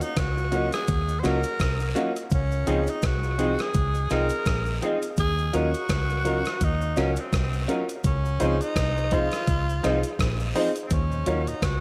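Lovers rock reggae with a smooth, longing mood, this short cut from a longer piece moves at an easy swung pace over a gentle sway between Ebm7 and Dbmaj9. A raspy, close-miked tenor saxophone carries the melody from the start, its gritty tone marked by vibrato and scooped notes, trailed by tape echo. Underneath, a gated 80s digital drum machine with an overdriven, thumpy kick, hi-hat and rim click sits in a large room with dub echo, while a dark, round, foam-muted fingered bass enters at 0.2 seconds and stays up front. A clear, slightly worn grand piano with dub echo fills out the harmony, and an electric guitar through a small old amp adds twangy, slightly broken-up stabs bathed in lush chorus, tucked in the background along with quiet cabasa, guiro, maracas and group handclaps. Near the end, at 11.1 seconds, a soft, flute-like tonewheel organ with slow rotary swirl surfaces very faintly, all under a light reverb.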